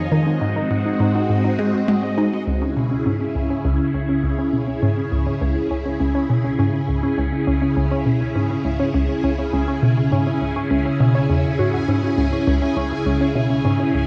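Hypnotic and expansive, this fragment of sequencer-driven space music is carried by a swirling, bright phased string machine holding sustained chords up front, with a bouncy, hollow square pluck riff beside it and a warbling, lo-fi dusty pluck spinning arpeggios through chorus and tape echo. A nasal analog drone hums very quietly on a single bass note from 1.2 to 2.4 seconds, as the harmony moves from Ab7 to C#m. A bubbling, resonant stepped-filter texture sits in the background from the start and fades in from 2.5 seconds, all set in a dark, reverberant concert-hall space.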